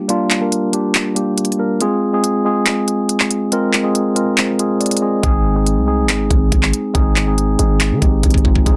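Eerie and melancholic, this hip hop and trap excerpt moves at 140 BPM in 4/4 with a half-time feel. A mellow tine electric piano carries the accompaniment from the start, its clean, direct tone softened by a low-pass filter and placed up front as the chords shift from Gm to Fm. The trap drum kit enters at 0.1 seconds with a knocking kick, crisp hi-hats and handclaps, with soft clipping on the snare. The opening plays as a break until 5.2 seconds, when a growling 808-style bass arrives on an Ab chord, its buzzy sine tone striking with a fast attack and then decaying. Light reverb surrounds the parts, and the mix is finished with a dense, heavily limited modern master.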